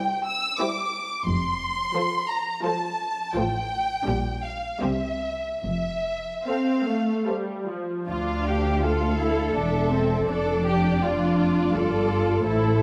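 An up-front violin section sings the lyrical melody over a rich second violin line and a smooth, even viola accompaniment, with vibrato throughout the bowed strings, before a background cello section and a distant double bass section enter at 1.3 s to anchor this slow, rubato romantic movement in 3/4, which turns toward D minor at 8.1 s within a wet recital-hall reverb and a dark, warm production in this excerpt from a longer piece.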